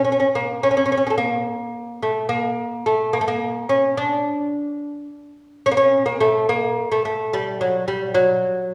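In a 6/8 at 72 dotted-quarter beats per minute with a straight feel, this short Persian excerpt features a solo lute, its delicate, fingerpicked gut and double strings, some doubled at the octave, sitting up front in a lower register within a wet recital-hall reverb, carrying a festive yet passionate mood as the phrase shifts into a new section at 5.7 seconds.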